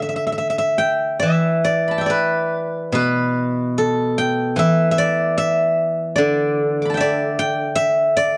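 The rhythm moves freely in rubato over a loose 4/4 pulse, giving this short fragment of a longer Chinese traditional piece a breathing, unhurried feel. A single steel-string zither carries everything as a solo, sounding for the full 8.4 seconds across a broad span from its low register up into bright upper notes. Plucked with fingerpicks, its acoustic tone is ringing and silvery, and it sits up front in the mix. A moderate small-room reverb adds a short halo around each note, while the overall production leans dark. The mood is longing and contemplative, like a private meditation caught mid-phrase.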